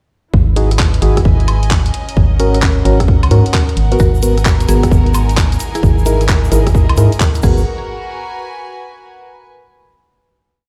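Soulful and bouncy, this short two-step UK garage piece in G# minor swings at 131 BPM, with a hollow, organ-like FM bass skipping beneath a tight four-on-the-floor kick, bright swung hats, rims, claps, woodblock and crash, dark nasal organ stabs with chorus and delay, and a rich, floating string section pumping under the sidechain, joined at 4.0 seconds by a woody mallet-like pluck riff in thirds and sixths with 12-bit grit, a lush vibrato violin pad and a grainy hand-played shaker, before the strings hold a final G#m9 chord alone from 7.7 to 9.5 seconds in a stone room's reverb.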